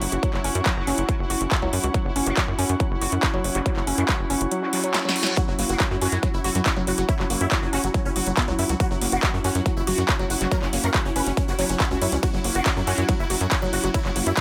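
Hypnotic and psychedelic, this psychedelic trance excerpt drives along at 140 BPM in a straight 4/4, with a punchy electronic kick arriving at 0.2 seconds alongside a big-room dance kit of snare, handclaps, metallic hi-hat and ride cymbal, all placed up front. A tight, saturated sequencer bass with a fast, decaying filter pluck anchors the low end, while a woody, wave-folded pluck riff with a ring-modulated edge carries chorus, sidechain pumping and dub echo. Behind them sit a pulsing, tempo-synced gated texture holding sustained chords, roughened by vintage 12-bit sampler grit, and an airy, breathy pad with a slow attack. A nasal, formant-filtered wobble bass plays a second line in the background under lush chorus and delay. After a quiet reverse cymbal and drum fill around 4.8 seconds, a huge, detuned supersaw melody enters at 5.4 seconds, dense and compressed, with a moving phaser and dub echo, in a dry, close mix.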